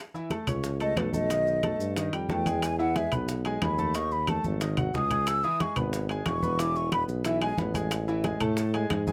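A clear, open concert grand piano, bright soft-handed congas and grainy maracas launch this fiery, driving Afro-Cuban jazz cut at 181 BPM, soon joined by tight high-tuned bongos in the background, ringing metal-shell timbales, woody claves and an up-front tuba with a smooth, vibrato-laced top, before an airy, hollow concert flute enters at 0.8 s for a tongued solo up front, with a drum fill at 4.3 s and the flute bowing out at 7.6 s, all captured with close, detailed microphones and little reverb.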